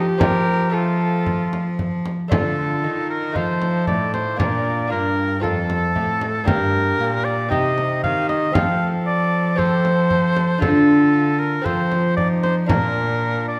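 A renaissance-style consort dance in classical vein, this short excerpt moves at 116 BPM in a straight 4/4, with a rustic yet courtly mood and tuning set slightly low at A4 = 437 Hz. A clear, up-front oboe carries the melody with vibrato, miked close to the listener, while a single bowed viola with airy, nasal gut-string tone traces a second line in the background. A bright, delicate lute, fingerpicked on doubled strings with some octave-doubled courses, supplies the accompaniment, and one rich, reedy cello holds the bass close and forward. A frame drum played with hard hands, set in a small-room sound, enters at 0.2 seconds and stops at 12.9 seconds. The harmony centres on F, passing through Dm, F7, Bb, Gm and Cm, and the whole consort sits in a wet scoring-stage reverb with a 1.5-second tail.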